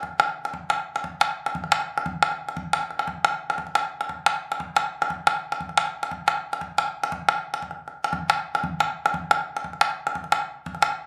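A joyful, flowing feel runs through this short fragment of West African traditional music, cut from a longer piece and set in 12/8 metre with a straight feel. The only voice is a calabash, heard from 0.0 to 10.9 seconds, carrying the percussion with a deep, acoustic tone. It sits close and dry, up front in the mix, so every stroke lands with immediacy. Around it, the room adds a short studio reverb and a club-like ambience, and the whole take has the compressed character of a phone recording made in the space. The music moves from an opening passage into a second section at 4.1 seconds, which carries on until the fragment breaks off.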